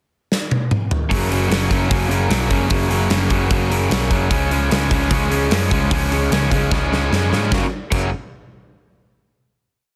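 Punk rock at 150 BPM in F# major, rebellious and rowdy, opens with a drum fill from the big, punchy rock kit at 0.3 seconds before a crunchy overdriven guitar pounding driving eighth-note power chords, a distorted guitar driving eighth-note barre chords and a growly picked bass crash in together at 1.1 seconds for a short, dry, densely limited verse that moves from F# to C# and lands on a final F# chord at 7.5 seconds.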